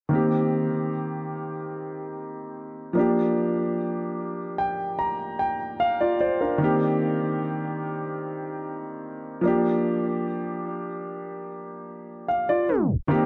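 Sensual and longing, this R&B fragment at 74 BPM in C minor sets a solo concert grand piano up front, its intimate, natural tone carrying deep bass and audible action noise, with a digital delay trailing the notes as it moves between Cm7 and Gm7. A brief piano fill arrives at 4.2 seconds. The dark production sits in a lush hall reverb, and a tape stop at 12.7 seconds pulls the passage to a halt.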